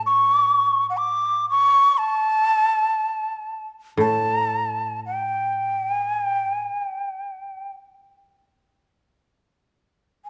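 A breathy, bright shakuhachi carries the melody in free time from the first moment, sitting up front with soft attacks and vibrato, while a mellow, woody koto played with fingerpicks holds a low accompaniment beneath it. This short fragment of traditional Japanese chamber music feels calm and austere, set in a moderate recital-hall reverb. The koto falls away at 6.7 seconds, leaving the shakuhachi alone until 10.3 seconds.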